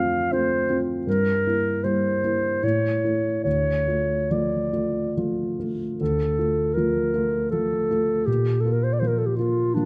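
In a flexible, rubato triple metre, this brief fragment of a romantic classical duo unfolds with an elegiac, melancholic air, the clarinet carrying the melody with a soft attack and a warm tone while the grand piano accompanies in short-sustained notes beneath it. Both instruments sit up front, captured by close, detailed microphones within a moderate concert hall reverb. The passage states its opening phrase and then begins it again at 6.0 seconds, the harmony settling onto D minor and closing on a bare B-flat sonority.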